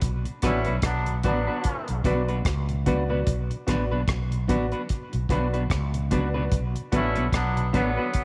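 A round, dark fretless bass sits up front in this serious, hypnotic roots reggae passage, cut from a longer piece and riding a gently swung sixteenth-note feel over a single chord. Beside it, a deep, dry acoustic drum kit with a tight kick, rolled-off top, hi-hat and rim click is also placed close to the listener. A clean, picked semi-hollow guitar with a hollow-body tone adds accompaniment through subtle chorus and tape echo, while a grand piano with long, natural sustain supplies stabs in its upper register. Underneath, a very quiet, flute-like tonewheel organ with audible key click turns through a rotary speaker. A tight, vintage horn section with a clear, pop-style sound and tape echo enters at 0.4 s, drops out at 2.0 s and returns at 6.9 s, all set in light reverb and studio ambience.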